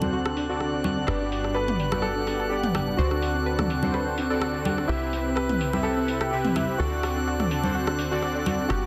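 An up-front soft supersaw plays smooth, detuned stabs under a filter sweep and tape echo, while a mellow analog pad, a round chorused pluck arpeggiating through its own sweep, a punchy wave-folded bass, a layered deep house kit of congas, rim click and toms, background hi-hats, a glassy drifting harmonics texture and a deep-toned grand piano melody entering at 1.1 seconds carry this uplifting, euphoric progressive house excerpt over D7, Gmaj7 and Cmaj7 chords in a dense, heavily limited mix.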